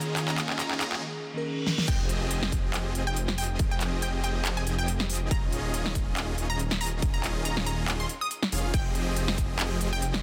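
Future bass at 140 BPM in F minor, this bittersweet, dreamy passage from a longer piece runs on a swung, half-time 4/4 feel, opening with a brief build-up where a drum fill, a reverse cymbal and a riser sit in the background beneath glassy digital keys, an ethereal, very quiet pad and a bright supersaw chord riff. The drop lands at 1.9 seconds with an impact, bringing in a punchy electronic kick and a thick, detuned saw bass with chorus that sits up front and pumps with the sidechain alongside the huge, airy supersaw chords. Over it all, a lush, punchy unison pluck carries the melody high in the register, treated with tape echo and sidechain pumping, while the big-room dance kit drives hard with a huge snare, crisp hats, handclaps and crash cymbal. The harmony moves between Eb7sus4 and Fm9, giving the drop its wistful lift. The mix is dense and heavily limited, set in light reverb and a digital ambience.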